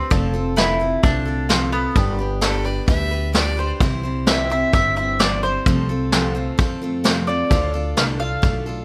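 Easygoing and nostalgic, this honky-tonk and classic country passage is cut from a longer piece, with a round, mellow mandolin carrying the melody over bright, full-bodied picked steel-string acoustic guitar and a woody, growly pizzicato upright bass. A vintage brush drum kit sits up front with a punchy kick and rolled-off top, while a clean pedal steel guitar with fingerpicked slide, volume swells and subtle chorus holds sustained chords in the background. A nasal, earthy bowed fiddle adds a brief second line from 2.4 to 3.7 seconds, all in a dry, rough home demo mix.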